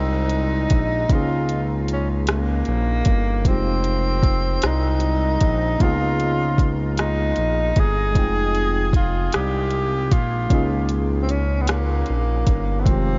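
A breathy, whispered tenor saxophone sings an intimate, up-front melody over a worn, slightly out-of-tune tine electric piano and a smooth, gliding detuned synth bass in this sultry, late-night slow R&B excerpt in 6/8 at 51 BPM, with a soft electronic drum kit of hi-hat, kick and rim click entering at 0.3 seconds, the saxophone trailed by a diffuse ambient delay, and the whole dreamy, dark-toned mix soaked in huge reverb as the chords sway between Fm9 and Db69.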